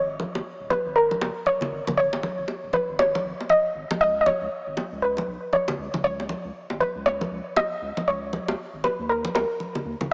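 A moderate, lush hall reverb and a small-speaker sound frame this moody, hypnotic deep house excerpt in G# minor, moving at 118 BPM in 4/4 with a 60% swing on the sixteenths. Up front, a soft, round pluck carries the melody between A#4 and D#5, its gentle tone blending triangle, sine and sawtooth with a faint noise layer, shaped by a filter pluck that decays after each fast attack and dressed in lush chorus and tape echo. Beneath it sits a deep, dark analog bass spanning D#1 to D#2, sustained and nasal, mixed well below the lead. Congas and bongos enter at 0.2 seconds with a warm, acoustic, small-room character and hard hands. The harmony moves from G#sus4 to C#sus2 at 4.0 seconds and lands on D#5 at 9.1 seconds, just before the pluck stops at 9.8 seconds.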